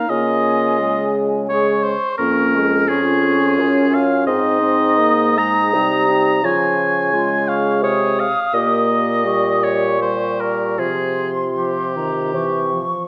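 A slow romantic movement for wind quintet in 3/4 moves with a rubato feel at about 74-89 BPM, carrying a yearning, solemn mood through a short passage cut from a longer piece. The mellow silver concert flute sings the melody high above the group, its pure metal tone shaded with expressive vibrato and heard close up. Just beneath it, the oboe carries a second line, sitting up front with a smooth top and light vibrato, while the clear clarinet and the vintage-toned French horn fill in the accompaniment, the clarinet set back in the background. The dark bassoon anchors the bass from 0.1 seconds, sounding distant and roomy with a touch of vibrato. The harmony settles on Db before passing through a diminished chord to a suspended C that resolves to C near 12.3 seconds, all bathed in the wet reverb of a recital hall.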